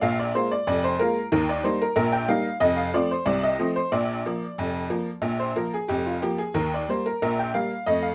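Cheerful and jaunty, this short ragtime fragment cut from a longer piece features a solo tack piano with a bright, metallic, jangly, vintage sound, sitting up front in a rough home demo mix with light reverb as it runs through a chord progression of Bb5, Eb, F and Bb before returning to Eb, lasting about 8.1 seconds.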